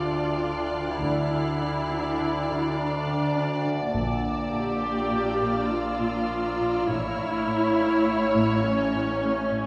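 Up front and lush, a muted viola section carries soft-attack accompaniment through this ominous, tense suspense cue in 5/4, beneath a distant, con sordino violin section melody, a close, high muted violin texture, and cello sections split between a veiled bass line and a very quiet riff. An ethereal, airy pad with ensemble chorus sits in the background over a nasal, resonant drone with moving overtones, while a barely audible electronic sub drop marks the opening impact and a double bass section enters in the background at 1.0 s. Heavy-stick taiko drums, compressed and saturated, strike between 3.9 and 5.1 s as the harmony moves from Dm to Bb and then A, the cue set in a wet church-like hall reverb with vinyl crackle.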